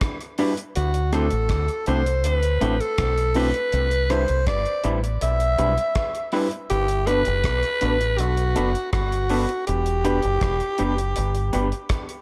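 A breathy, raspy alto saxophone carries the melody up front with vibrato and tape echo in this tender, romantic lovers rock reggae cut at 81 BPM in G major, moving through Em7, D7, Cmaj7 and Gmaj7. Beneath it a deep, round fingered electric bass sits close and punchy, while a damped 70s drum kit with a tight kick, hi-hat and rim click carries gated reverb from 0.0 seconds. A small old amp gives the guitar stabs a slightly broken-up, lo-fi edge with dub echo, and a worn, slightly out-of-tune tine electric piano sits in the background through phaser and dub echo, the whole set in a light small-room ambience.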